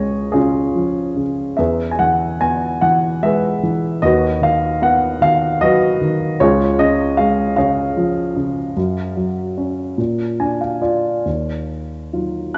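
Classical solo piano in a lyrical, melancholic mood: a short excerpt in 6/8 at a slow 50 BPM with uneven, rubato beats, where a dark, mellow baby grand plays up front with intimate closeness, audible action noise and short sustain, set back in the room within a wet plate reverb whose top end is dulled. It adds a fill from 10.0 s, and the music moves into a new section at 11.3 s.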